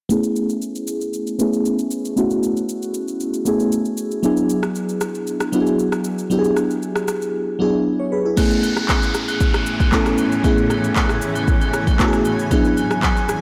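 A straight 4/4 groove at 116 BPM drives this short amapiano cut, built on an electronic, produced afro-pop drum kit with a deep kick, handclaps, rim clicks, shaker and crash cymbal. The mood is warm and soulful in A major, with an up-front FM electric piano, crystalline and sparkling yet mellow and full-bodied, carrying the Amaj7 and E7 accompaniment through chorus, tremolo and a low-pass filter that sweeps across its first 8.4 seconds. At 8.4 seconds the arrangement opens up as distant agogo bells and woodblock arrive, heard in a large room, along with an electronic downlifter. A granular cloud pad follows at 9.2 seconds, spreading blurred, detuned, evolving chords with a slow attack and its own built-in reverb. The whole mix sits in light reverb and has a blown-out, overdriven edge, and the passage is cut from a longer piece.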